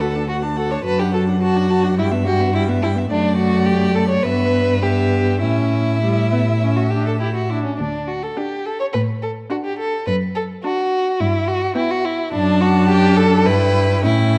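All four bowed voices of a string quartet enter together at 0.0 s in this cheerful, spirited classical-period movement in D major, moving at a quick 105 BPM in 4/4 with uneven, rubato beats. A rich, focused solo violin carries the melody high above an up-front second violin and a viola that both sing with vibrato and expressive portamento, while an even, smooth cello anchors the bass from the front of the mix. The dark, warm production sets the quartet on a scoring stage with moderate reverb, in a passage cut from a longer piece that circles through D, Em/G and A chords before closing on Em/G at 13.5 s.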